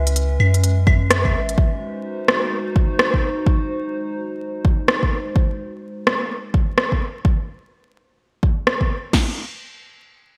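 A melancholic, nocturnal future garage fragment cut from a longer piece, moving in 4/4 with a swung sixteenth-note feel over a C#m7 that shifts to G#7. A warbling, detuned tape-like pad with chorus and its own reverb holds sustained chords until 5.3 seconds, its slow attack and long release pumping against the sidechain. A soft, round 808-style bass, deep and dark with a fast attack and decaying tail, sits up front and pumps too, but only through the opening 1.6 seconds. Two overdriven electronic kits carry the groove: an organic one of smooth hi-hats, claves and rim clicks with gated reverb, and a layered deep house kit whose deep kick, punchy snare and crash cymbal arrive at 0.9 seconds. The production is bright in a 1980s digital way, set in a lush hall ambience and dusted with vinyl crackle, before the harmony drops away into a short closing passage.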